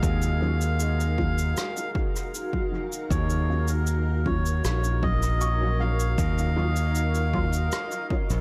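A bright, up-front fingered electric bass anchors this spacious, meditative ambient dub fragment, joined by a punchy, overdriven electronic kick, while a distant, roomy cabasa and rim click are sent into dub echo. A reedy, breathy melodica with vintage 12-bit sampler grit and echo carries the melody over a cloudy, detuned granular pad. In the background, a felt-muted upright piano with audible action noise plays echoing arpeggios, while a dark, filtered dub chord stab with phaser and chorus enters at 0.4 seconds.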